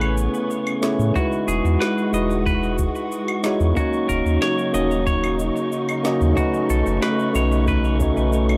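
Set in a dry, gritty hardware recording with digital ambience, this blissful, smooth sunset chillout excerpt pairs a clean tine electric piano through a combo amp and tape echo with silky, warbling string-machine chords in ensemble chorus, bright picked arpeggios from a semi-hollow electric guitar also on tape echo, a round sine sub bass, layered electronic claves, shaker and a woody snare re-recorded in a small room, an airy, dark wind-like noise texture with built-in reverb in the background, and a deep, tape-warm electronic kick drum that enters at 1.2 s, all moving through Amaj9, Emaj9, D#m7 and B9.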